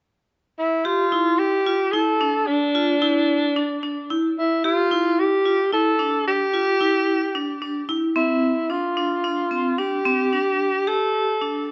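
Progressive instrumental in a driving, bright 7/8, cut from a longer piece, where a breathy, whispered tenor saxophone with scooped notes and tape echo carries an intimate, up-front jazz-style melody from 0.6 seconds, over ringing, metallic arpeggios from a hard-mallet vibraphone with medium motor vibrato, all set in a moderate studio reverb with a rolled-off top end as the harmony moves from D minor colours to suspended C chords at 8.2 seconds.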